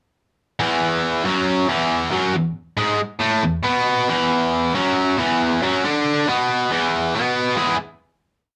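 Raw and rowdy, this short rock piece is over in a flash, carried entirely by a single electric guitar in a straight four-four feel. The guitar is bright and biting, with an overdriven edge, and it is picked and double-tracked so it sits up front and sounds doubled in weight. From 0.6 seconds it drives an octave riff that ranges from a low E up to G sharp, anchored on an E power chord. At 7.6 seconds the riff gives way to a final full E chord that rings out briefly. A moderate small-room reverb adds a touch of space around the playing and keeps the sound close and immediate.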